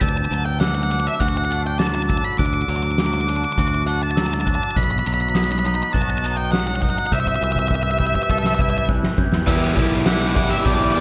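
An octave-fuzz lead guitar carries a dark, distorted melody up front with slapback echo, over a morphing, warbling wavetable pad, mellow rubber-mallet glockenspiel arpeggios, twangy clean guitar arpeggios, a bright fingered electric bass and a soft-mallet drum kit with a fat snare and boomy kick. This melancholic, cinematic post-rock excerpt moves at 102 BPM in E minor through D, B and Am7/C chords, with a drum fill from 7.1 seconds. At 9.5 seconds, a cranked stack guitar with phaser and an overdriven semi-hollow guitar join in the background with a riff on Em7, all set in a small, lightly reverberant room.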